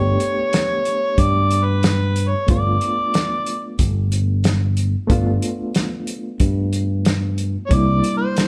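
A straight-eighth soul blues groove at 92 BPM in 4/4, with a light 54% swing on the sixteenths, drives this short cut from a longer piece in G mixolydian. The mood is swaggering and gritty. An overdriven, amplified harmonica carries the solo melody up front between B4 and D5, its jazz-style phrasing marked by vibrato, tongue slaps and scooped notes. Beneath it, a clean, reedy electric piano with fast tremolo sits lower in the mix and sounds bright and direct, while a growly fingered electric bass plays up front from G1 to G2 until it stops at 8.0 s. An acoustic soul drum kit enters at 0.2 s with a punchy kick, a medium-tuned snare and hi-hat, its rolled-off top and pumping room kept tight and close. The band plays live together in one room under a moderate large studio reverb, holding on G7 before moving to C7 at 7.7 s.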